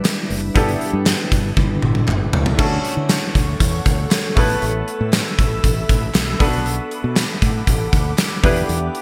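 1980s-style pop at 118 BPM in D major, glossy and nostalgic, built on an up-front gated 80s drum kit with a punchy kick and bright cymbals whose fill from 1.6 to 2.6 s leads into a new section over Dmaj7, Asus2, Bm7 and Em7, while a round fretless electric bass, a clear concert grand piano with lush chorus, a glassy, ethereal FM pad with a slow attack and long release, and very quiet, hollow group handclaps fill out a bright digital production in a moderate plate reverb, cut from a longer piece.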